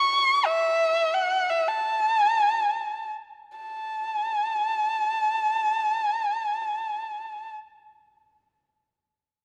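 Chinese traditional music in free time, festive yet pastoral, drawn from a longer piece in the A gong mode. A single warm erhu carries the melody up front from 0.0 to 7.5 seconds, bowed with vibrato, soft attacks and expressive portamento in a high register, slowing down between 0.5 and 3.6 seconds before a second section begins at 3.6 seconds. A moderate concert hall reverb with a 2.1-second decay gives the lone instrument an airy, spacious halo.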